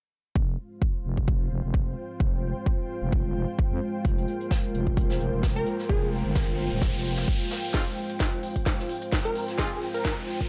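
A growling, thick FM bass drives this aggressive, bouncy bass house excerpt in F minor at 130 BPM with a 55% swing on the 16ths, sitting up front with tube saturation and sidechain pumping beside a punchy electronic kick until 7.3 seconds, while a moody analog pad with chorus and an ethereal triangle-and-sawtooth pad with ensemble chorus hold an Fm chord beneath. Brushed snare and hi-hat from an acoustic jazz kit join at 4.0 seconds, a catchy detuned unison lead with digital delay flashes briefly, and an electronic riser enters and keeps building on into the second section. At 7.7 seconds a crisp, tape-warm garage kit with a cracking snare brings a drum fill and build-up as a tight, bright horn section adds background stabs, all in a light small-room reverb.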